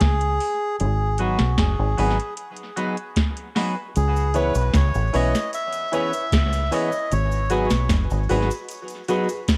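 A reedy, breathy melodica carries the melody over a round, foam-muted fingered bass with transformer saturation and an up-front analog rhythm box with a deep kick, crisp snare and metallic hats, all from the start of this deep, hypnotic dub reggae excerpt in C# minor at 76 BPM. At 1.2 seconds a dark, clean semi-hollow guitar enters with subtle chorus, alongside clear, polished concert grand piano stabs with audible action noise, each trailed by tape echo. A distant cabasa joins in the background at 4.0 seconds as the harmony moves from G#m7 to C#m7, and the whole piece carries the soft grain of a home cassette recording with light studio reverb.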